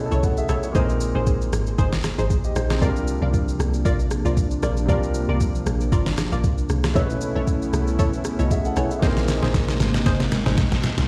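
An up-front, tape-softened electronic R&B kit of soft kick, deep snare, rim click and shaker drives this late-night, soulful amapiano excerpt at 116 BPM with a swung 16th feel, alongside a deep, round FM log drum bass, a grand piano, and punchy, warbling sawtooth chord stabs treated with chorus, phaser and tape echo over shifting suspended ninth chords, while a smooth, detuned analog pad with sidechain pumping enters at 2.8 seconds and the kit plays a fill from 9.0 seconds, the mix sounding as if played on a big sound system in a bare stone room.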